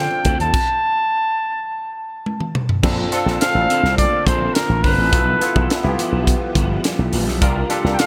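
A straight 4/4 groove from a crisp, punchy fusion kit with a high-tuned snare drives this glossy, urban 1980s jazz-funk pop piece, cut from a longer track; a stop at 0.5 s is broken by a drum fill at 2.3 s that leads into a lush Bbmaj9, G13/B and C9sus4 progression. Up front, a breathy, whispered flugelhorn sings the intimate melody with light vibrato and scooped notes. Beneath it sit a growly slap bass through an envelope filter, a barky, lightly overdriven tine electric piano with chorus, a twangy, slightly broken-up guitar riff in the background, and a very quiet, silky string machine, all in a bright digital production with light reverb and small-room ambience.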